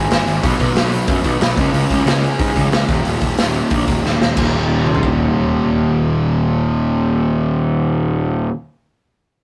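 A rough rehearsal-room sound with light reverb frames this energetic, upbeat punk rock excerpt at 183 BPM in straight 4/4, where a growly, fuzz-soaked picked bass sits up front beside a gritty, saturated garage drum kit with a boomy kick and a pumping stone-room ambience that plays from 0.1 s, hits a fill at 4.0 s and stops at 5.1 s, while a bright overdriven electric guitar and a crunchy guitar tucked in the background drive a riff over B5, Db5 and Eb5 chords.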